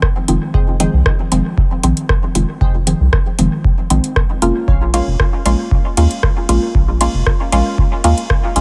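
A steady, straight 4/4 pulse at 116 BPM drives this deep, hazy dub techno fragment in F minor. An up-front electronic kick sits beneath a booming analog drum machine whose metallic hi-hat, ride cymbal and rim click trail into dub echo, while a round, nasal analog bass pumps with sidechain. A muted sawtooth chord stab, thickened by chorus and phaser and sent into dub echo, moves from Fm7 to Bbm7 at 4.7 seconds, and a crisp, warbling, detuned wavetable stab adds a riff in the background from 0.5 to 5.1 seconds, all in a dry space.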